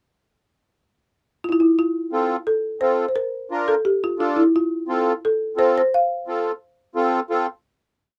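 A moderate booth ambience frames this short, complete Latin piece, close and only lightly reverberant, with both instruments up front. It moves at a brisk 173 BPM in a straight 4/4 in F major, sunny and danceable from the pickup bar onward. A folk marimba played with medium mallets carries the melody from 1.4 seconds, its hardwood bars giving a woody, dry, rustic tone as it spins short hook phrases between E4 and F5. An accordion enters at 2.1 seconds with rhythmic triad chords in the range C4 to Bb4, reedy and smooth, sweet yet slightly dark, its light tremolo tuning adding a gentle shimmer. The harmony moves simply from F to Bb and back to F before the piece settles on a final chord at 7.3 seconds.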